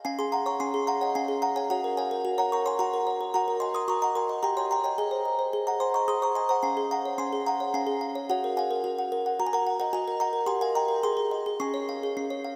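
A lush hall reverb with a long three-second tail soaks this dreamy recording, wrapping a lone music box in a soft haze while keeping it up front. This short classical lullaby, cut from a longer piece, sways gently in three-four time with a straight feel and a tender, dreamy mood. The music box plays solo throughout its 12.6 seconds, spanning from its middle register up to glittering high notes. Its delicate, tinkling tone is bright and plucked, with the small-box character and slight detuning that lend it a fragile, nostalgic charm. The harmony moves twice through a cycle from tonic to subdominant, passing through supertonic and secondary-dominant colours on the way to the dominant, and returns home to the opening chord at the close.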